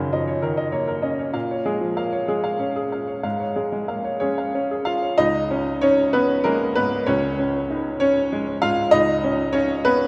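Neoclassical minimalist piano in 6/8 at 64 BPM with a rubato feel, this intimate, hopeful excerpt features a solo upright piano with a clear, woody, vintage tone and short sustain, placed up front yet bathed in a long cathedral reverb, moving through D#m7/F#, A#m7 and C#/G# before settling on C#add9 at 5.2 seconds and ending unaccompanied by chords at 8.9 seconds.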